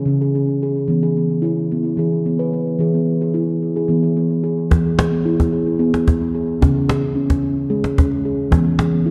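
A calm, gentle piece of meditative world music opens with a steel tongue drum playing arpeggios at 0.0 s, its round, pure, ringing tone struck with soft rubber mallets and carried by a tape echo. Moving at 220 BPM in eighths with a straight feel in 7/8, the drum sits up front and stays mellow and smooth across its range from C#3 to B4. The harmony is in E major pentatonic and moves between C#5 and E chords. At 4.7 s a cajon enters up front, its woody, close and dry sound played with soft hands and carrying faint snares, before dropping out at 8.9 s. A concert hall reverb with a 2.4-second decay surrounds the performance, and the production is dark and warm. This is a short excerpt cut from a longer piece.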